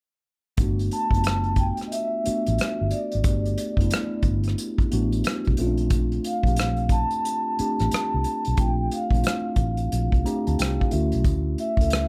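A dry, close-sounding excerpt of smooth, soulful neo-soul R&B with a swung sixteenth-note feel, moving through lush Gmaj9, Bbmaj9 and Dmaj9 chords. An acoustic drum kit played with bundle sticks sits up front with a punchy kick, hi-hat and rim click, beside a dark, round, foam-muted electric bass, while a mellow tine electric piano with phaser supplies the chords underneath. A metallic, ringing vibraphone with fast motor vibrato carries the airy melody from 0.9 seconds, and the electric piano adds a fill between 9.9 and 11.2 seconds.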